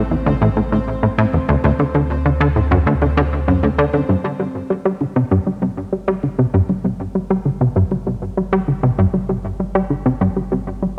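Ambient, sequencer-driven space music with a hypnotic, expansive mood, heard in an excerpt cut from a longer piece. A plucky analog bass riff sits up front throughout, its punchy, funky, wave-folded tone bouncing through tape echo, and a filter sweep shapes it over the first 4.1 seconds. Beneath it, a deep, round sine sub bass holds sustained notes for the full length, fading in from 4.1 seconds onward. Over the opening Am and D7 changes, a pulsing, tempo-synced triangle texture with unison voices, chorus and its own reverb hovers softly in the background before stopping at 4.1 seconds, where the harmony falls away. A moderate scoring-stage reverb lends the whole mix a spacious, open setting.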